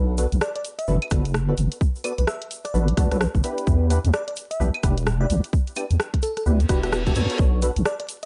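Skippy and soulful, this short two-step UK garage cut swings at 129 BPM in B minor, moving from Bm7 to Em7 and back as a deep, wobbling bass sits up front beneath hollow, nasal organ stabs treated with chorus and digital delay. A bell-like FM electric piano carries the melody in sparkling, mellow tones, while a layered garage kit of claves, hi-hat and rim click joins a grainy, close tube shaker in the background and a tight electronic kick punches in from 1.1 seconds. A reverse cymbal sounds at 6.7 seconds, and the whole mix has a dark, vinyl-crackled digital ambience.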